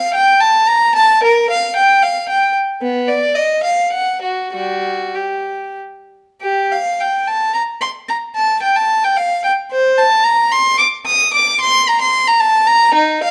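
A lone bowed violin carries this baroque-style suite movement, its gut-string tone both rich and faintly reedy, with light vibrato in a period style. The mood is solemn and introspective, unfolding at a moderate, stately pace in triple time with a freely flexing rubato feel. The single player sits up front and ranges from the low G of the instrument up into its high register, sounding from 0.0 to 13.3 seconds. A stone room lends a reverberant halo to the recording, with the space itself heard from further back. The passage falls into two parts, turning to a new phrase at 6.4 seconds, and it is cut from a longer piece.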